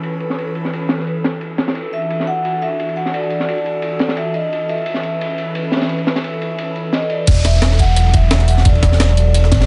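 A small-room sound with light reverb and a rolled-off top frames this soulful, lush liquid drum and bass excerpt at 174 BPM, cut from a longer piece and swung gently on the sixteenths. An airy, breathy pad holds sustained chords from the start, its detuned, chorused and phased tone pumping under sidechain as it moves between B9sus4 and E9sus4, while a crunchy breakbeat kit of ride cymbal and high-tuned snare plays with a dark, saturated grit. At 1.9 seconds a vibraphone struck with soft mallets enters with a mellow, ringing melody between D5 and F#5, trailed by dub echo. The drop arrives at 7.3 seconds, bringing in a deep, up-front sub bass with an added octave, a knocking layered electronic kick, and a second, sampler-style breakbeat kit whose pitched-up, tape-toned crash, hi-hat and snare sit compressed and gritty. A downlifter sweeps faintly in the background beneath this fuller passage as the excerpt ends on E9sus4.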